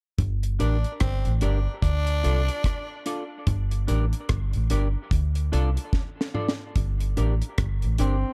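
An echo-heavy small-room mix frames this meditative, serious roots reggae excerpt at 73 BPM, swung on the sixteenths and moving between G minor and D minor. A dark, round, foam-muted fingered bass and a dry, up-front drum kit with a tight kick and high-tuned snare anchor the groove, while a clean semi-hollow electric guitar adds chorused, dub-echoed accompaniment and a raspy, gritty tenor saxophone contributes a short echoing second line early on. A drum fill at 5.9 seconds leads into a new section, where a brilliant, distant trombone enters briefly at 8.0 seconds.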